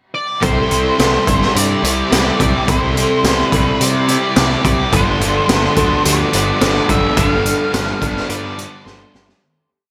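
Hazy and wistful, this short, complete shoegaze and dream pop rock piece moves at 107 BPM in a straight 4/4, opening with a brief pickup before settling into a verse over Cadd9 and then G7sus4 at 4.9 seconds. A dark octave-fuzz lead guitar carries a hook-based melodic motif through analog delay, while a fingerpicked twelve-string acoustic guitar sits in the background with a shimmering, octave-doubled ostinato, its fresh strings and finger squeak softened by ensemble chorus. Beneath them, a crunchy overdriven guitar with reverse reverb and a thick, dark fuzz guitar with lush chorus both strum chords with whammy-bar dips, and a double-tracked distorted electric guitar adds bright ringing chords from 4.9 seconds. A punchy, overdriven fuzz bass drives eighth notes under a raw garage drum kit that stays up front, with a high-tuned snare, boomy kick and a gritty, saturated, rolled-off top. A light studio reverb glazes the mix, and the piece fades out from 7.2 seconds as a drum fill closes it at 8.9 seconds.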